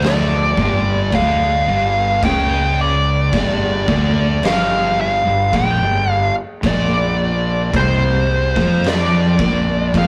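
Ominous and heavy, this stoner and doom metal excerpt crawls at 54 BPM in a straight 4/4, with a wah-inflected, distorted fuzz lead guitar up front carrying the melody over two thick, dark fuzz guitars grinding out the riff in the background, one of them very quiet. A round, overdriven fingered bass sits up front with tube saturation, while an oversized low-tuned drum kit brings a punchy kick, fat snare and dark crash cymbals with a gritty, rolled-off top. The whole piece has the rough feel of a rehearsal-room recording in a small, moderately reverberant space, with the harmony moving from G5 to Bb5 at 6.6 seconds.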